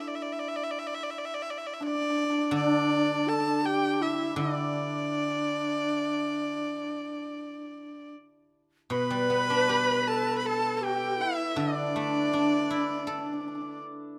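A clear, nasal erhu carries the melody up front with light vibrato and portamento, joined from the start by a shimmering hammered dulcimer, in this festive, pastoral piece of Chinese traditional chamber music in D zhi mode, played rubato at 80 BPM in 4/4. A reedy bamboo xiao enters at 1.8 seconds, and a silvery guzheng played with fingerpicks soon adds ringing accompaniment; a husky horsehead fiddle then joins in the background at 8.9 seconds as the second section begins. Close, detailed microphones and light reverb capture the ensemble.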